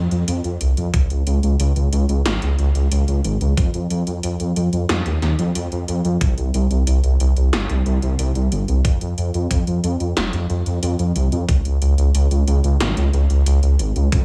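A dark, detuned sawtooth bass anchors this nostalgic, moody synthwave excerpt at 91 BPM, its deep, rumbling unison voices beating against each other, given tube saturation and sidechain pumping as it sits up front between F1 and F2. A thumpy, sampler-style electronic kick enters at 0.9 seconds, while analog 80s drums with a gated snare and metallic hi-hats sit lower in the mix, both kick and kit carrying a tape-warm color. The sound is dry and close, with little reverb, and the music is cut from a longer piece.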